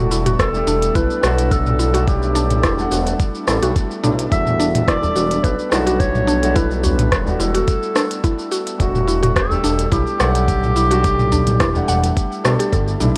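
Through light reverb and a worn, warbling cassette-tape haze, this meditative organic downtempo excerpt at 107 BPM in E minor sets a dark, distant clarinet melody over felt-muted upright piano with tape echo and sidechain pumping, a breathy, very quiet pad, a woody FM mallet-like pluck playing chorused arpeggios, a smooth up-front synth bass, an electronic kit of crisp hats, cabasa, rim clicks and toms, a gritty overdriven kick, and a small, dry udu that enters at 5.0 seconds in the background.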